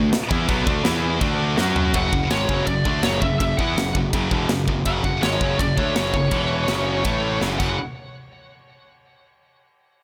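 A straight, driving 4/4 pulse from an airy, polished metal drum kit with bright cymbals and a tight kick, marked by fills at 1.6 and 7.4 seconds, anchors this relentless, epic heavy metal excerpt, where two bright, distorted rhythm guitars (one high-gain, the other tucked in the background) and a growly, punchy fuzz bass churn through power-chord riffs under light reverb, joined at 2.0 seconds by a warm high-gain lead guitar with delay that carries the melody.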